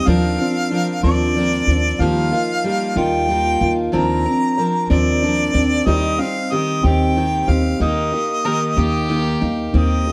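Acoustic folk in a gentle, hopeful mood, this short cut from a longer piece moves at 62 BPM in a straight 6/8 in Eb major. A harmonica carries the melody with light vibrato, its tone sitting up front yet carrying a roomy, distant air. Beneath it, a picked steel-string acoustic guitar gives full-bodied accompaniment with fresh strings and an audible finger squeak, while a dark, mellow upright piano spins arpeggios with long sustain. A pizzicato upright bass anchors the low end on Eb, thumpy and woody and placed close to the listener. Near the close, at 8.4 seconds, a single bowed fiddle slips in with a reedy, gut-string second line until 9.7 seconds. The chords drift between Bbadd9 over Eb, Ebadd9 and Cm over Eb before settling on Eb, all bathed in a moderate large-studio reverb.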